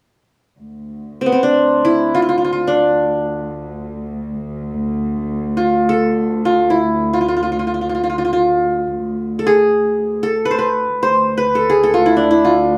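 A bright-edged, fingerpicked qanun with triple strings sits up front and carries a longing, melancholic Turkish melody in free time from 1.2 seconds, over a dark, reedy drone on a low D from a small period-style cello section with gut-string tone and light vibrato that enters at 0.6 seconds, all set in a wet small-room reverb in this excerpt of a longer piece.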